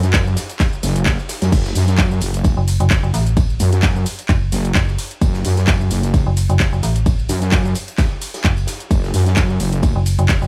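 A heavy, saturated wobble bass sits up front in this bouncy, gritty bass house piece, its detuned sawtooth tone thickened by chorus and overdrive and pumping against the sidechain from the start until 9.9 seconds. The groove runs at 130 BPM in 4/4 with a light swing on the sixteenths, in F# minor. A punchy, layered electronic kick drives the track up front, while a house kit adds crash and ride cymbals, handclaps, shaker and metallic hats. Further back, an oversized, low-tuned acoustic kit brings a big-room feel, with hats, a medium-tuned snare and tambourine, filtered, pumping and grainy with saturation. At 2.6 seconds a digital FM bass joins with a clanging, decaying tone, also up front and pumping with the sidechain. A small room ambience surrounds the mix of this cut from a longer track.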